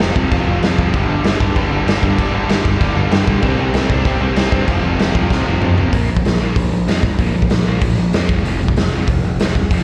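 Heard through a venue's PA with a recital hall's reverb hanging around it, this cut from a longer punk rock track has an angry, raw live-gig sound. At 192 BPM in a straight 4/4, three overdriven guitars sit in the background playing riffs: a bright cranked stack guitar, a double-tracked overdriven electric guitar, and a sludgy distorted guitar carrying a slapback echo. The chords run F5, G5, C5 and back to F5 before shifting to Bb5 and F5. Up front, a raw garage drum kit with a punchy kick and medium-tuned snare sounds gritty and saturated, its rolled-off top giving it a dark edge, and a fill at 5.3 s leads into the second section. A bright, growly picked electric bass drives underneath throughout. The cranked stack and double-tracked guitars stop at 5.9 s, leaving the sludgy guitar, bass and drums to carry the passage to its cut at 9.8 s.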